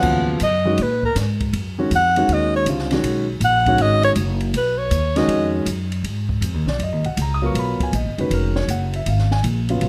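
Lightly reverberant, this short cut from a longer modal jazz piece in G# dorian swings at 159 BPM with a spiritual, intense mood, moving from B to G#m11 at 6.0 seconds. An up-front alto saxophone with vibrato, a soft attack and plate reverb solos until 5.5 seconds. Beneath it, a present, polished grand piano with deep bass, a woody pizzicato upright bass and a studio-room drum kit with a boomy kick, a high-tuned snare, hi-hat, ride and crash play throughout.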